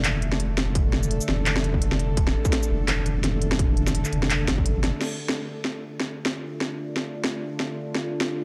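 Half-time drum and bass with a dark, cinematic mood, built on a tense, string-like drone of sustained chords that carries vibrato, its own reverb and sidechain pumping, and takes on a filter sweep from 5.0 seconds. A deep, soft, warm wobble bass with chorus sits up front until 4.9 seconds, while an industrial kit of clanging snare, crisp hats, shaker, handclaps and crash drives throughout, joined in the first half by a distorted electronic kick. The sound is dry and gritty with a cassette-tape tint, and the drums are re-recorded in a large room.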